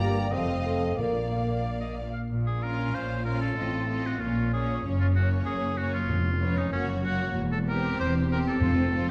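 The brief orchestral passage opens with a bright, punchy oboe and two bowed violin sections, one rich and one clear and distant, over rich violas, warm cellos and double basses, while an airy hollow flute, a mellow bassoon and mellow French horns colour only the first two seconds and close, dry timpani return from 6.1 s, all in a cheerful, lively classical-period movement at 95 BPM in 2/4 and Bb minor, set in a wet scoring-stage reverb with a dark, warm production.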